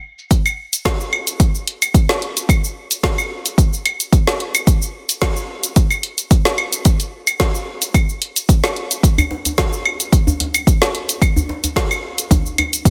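The sound is dense and heavily limited, with a light reverb and a modern master that puts every part up front, and each part carries the close character of a small room. This is an earthy downtempo groove at 110 BPM in 4/4, with a gentle swing on the sixteenths, taken from a longer piece. A deep house drum kit starts at 0.2 seconds with claves, hi-hat, shaker and a woody snare, and low-pass filtering dulls its percussion, hats, snare and room into a dark, muffled texture. A layered electronic kick joins almost at once and sits loudest in the mix, punchy and produced. At 9.2 seconds a deep acoustic djembe with metal rattles enters, lending a warm acoustic grain to the electronic beat.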